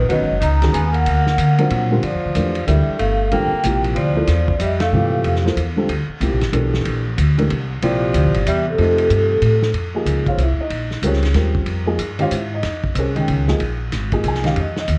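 A ringing vibraphone played with soft mallets carries the melody in this spiritual, hypnotic modal jazz excerpt, its mellow tone shimmering with a fast motor vibrato and trailed by analog delay. A clear, forceful tenor saxophone with scooped notes shadows it as a second line below, and the two drop out at 5.4 seconds, returning at 7.8 seconds for a brief stretch. The swinging 3/4 groove moves at a brisk 187 BPM, driven by a woody, thumpy upright bass with gut strings sitting up front and a vintage kit with a punchy kick, dark cymbals and a rolled-off top. A dark upright piano with short sustain fills in the accompaniment over rich extended chords, and the whole band hits an accent shortly before the melody's first pause. Centered in G dorian, the music shifts to Bb dorian at 9.7 seconds, all heard through light reverb, a small room ambience and the soft grain of cassette tape.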